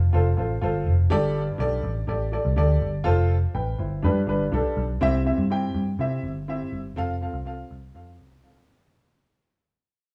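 Uptempo 1960s-style soul in C major at 123 BPM, this joyful, straight 4/4 fragment pairs a dark, round, foam-muted electric bass picked up front with a woody, worn, slightly detuned upright piano playing accompaniment. The harmony moves from F through Gsus2 and G before settling on C and returning to F, all tuned to A4 = 442 Hz. A light reverb gives a small-room feel, and the music fades out from 5.0 seconds to the end at 8.9 seconds.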